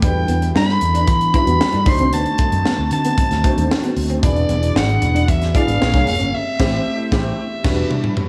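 A straight 4/4 groove from a tight funk drum kit, with its high-tuned snare and punchy kick up front in gated reverb, drives this bittersweet, urban cut of polished 1980s jazz-funk pop, taken from a longer piece. A fretless electric bass with lush chorus anchors the chords beside an intimate concert grand piano with audible action noise, a very quiet, shimmering pulse-width pad, and a slightly broken-up, picked guitar riff tucked in the background until 6.3 s, while a raspy, gritty soprano saxophone carries the vibrato-laden melody up front. A band accent lands at 6.3 s and a drum fill arrives at 7.4 s, all set in a small room with light reverb.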